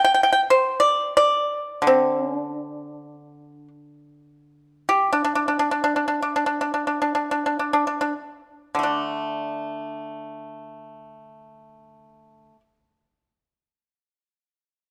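A solo pipa, plucked with fingerpicks, carries this short fragment of Chinese traditional music, its bright, percussive tone set up front and sounding dry at the source. The playing moves in free time across a span from D3 to G5, with a mood of longing and elegance. The opening passage slows down through its first 8.9 seconds, and a second passage begins at 8.9 seconds. The pipa's final notes sound at 12.6 seconds, just before the fragment ends. A moderate recital-hall reverb surrounds the instrument, and the overall production leans dark.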